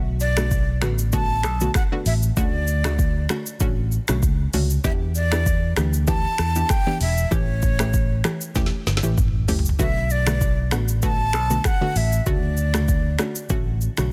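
A dry, dense and heavily limited mix carries this hypnotic, smooth afrobeats excerpt at 97 BPM with a lightly swung sixteenth feel, where an overdriven, up-front electronic drum kit of deep kick, woody snare, metallic hats, finger snaps, rim clicks, shaker and toms, with a fill at 8.6 seconds, sits over a dark, round, amped fingered electric bass, while a full-bodied sawtooth analog pluck with a noise layer and chorus moves through Bm7, Dmaj7, Em7 and A7, and a breathy metal jazz flute with vibrato, lifted highs and delay carries the expressive melody.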